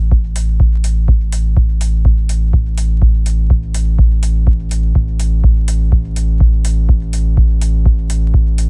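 A lightly swung 124 BPM pulse in 4/4 drives this hazy, meditative dub techno excerpt, where a dry, deep electronic kick sits up front beside a round, soft sub bass sustaining around A1 with sidechain pumping, while quieter tape-warm metallic hi-hats sit lower in the mix and a veil of vinyl crackle hangs over everything.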